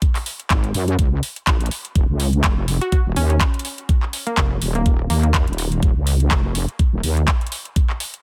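A dry, close-up mix with little reverb opens this short bass house cut, which moves at 124 BPM in 4/4 with a 56% swing on the sixteenths in Eb minor, carrying an aggressive, swaggering mood. A layered electronic kick knocks up front through the whole 8 seconds alongside a garage drum kit of handclaps and metallic hats, both drum parts re-recorded in a small room. From 0.5 seconds a heavy wobble bass churns between Eb1 and Gb2, its detuned sawtooth and sine unison saturated by tube drive and compressed, thickened with chorus and pumped by sidechain, yet keeping a mellow, resonant core. A glassy wavetable pluck surfaces at 2.8 seconds in the Bb3 to Gb4 range, crystalline and evolving, with a noise layer, filter sweep, vintage 12-bit sampler grit, chorus and dub echo trailing its decaying notes. Underneath, the harmony moves from Gb to Eb7sus2.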